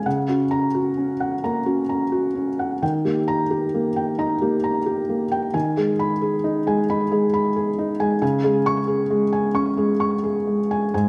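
In a loose, rubato 4/4, a solo felt-muted upright piano drifts through this brief fragment of a longer neoclassical minimalist piece, its melancholic, intimate chords spanning from the low register up to high notes. The tone is soft and boxy, with thin felt and audible action noise placed up front, while a slapback echo trails each phrase. A moderate recital hall reverb gives the close instrument a gentle sense of space.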